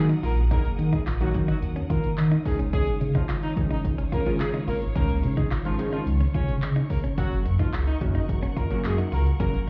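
Dance-pop at 108 BPM in Db major, upbeat and carefree, in a short section cut from a longer piece that moves from Ebm through Dbadd9 to Gb, with the whole mix heard muffled as if through a club wall. A punchy analog drum machine with handclaps, hi-hat and a dry kick sits up front beside a dark, glossy chorused synth bass that pumps against the sidechain, while a glassy, crystalline wavetable pluck and a direct-recorded clean electric guitar riff fill out the arrangement. A clear horn section carries the melody with vibrato and tape echo, lush bowed strings hold distant sustained chords in the background, and a very quiet, jingly tambourine joins at 1.1 seconds.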